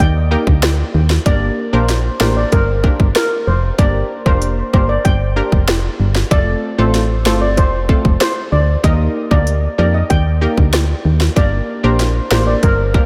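Soaked in a moderate cathedral reverb, this dreamy dancehall excerpt, cut from a longer piece, feels bouncy and sultry in a straight four. The electronic island pop drum kit sits up front, its tight kick, sharp snare and smooth hats roughened by overdrive and re-recorded in a large room. Beneath it, a solid FM bass gives punchy, round, dark digital notes with a fast attack and a decaying tail, also placed up front. An analog pluck enters at 0.3 seconds as accompaniment, a detuned, warbling vintage tone built from sawtooth, square and triangle waves, with a filter sweep, chorus and sidechain pumping. Over the top, a metallic steel pan struck with hard rubber sticks carries the shimmering lead through a diffuse ambient delay, its boxy small-room character floating over chords that move among Eb, Gm and F.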